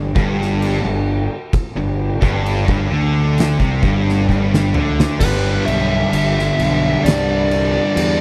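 An oversized, low-tuned acoustic drum kit with a punchy kick, fat snare, dark cymbals and a gritty, pumping stone-room sound drives this hypnotic, ominous stoner and doom metal passage at 65 BPM, joined up front by a growly, overdriven fuzz fingered bass, while two thick fuzz guitars and a bright, double-tracked tight distorted guitar churn a G5 riff in the background, a drum fill at 4.3 seconds ushers in a shift to G, and a shadowy fuzz lead guitar with slapback echo enters at 5.2 seconds, all set in a small room ambience.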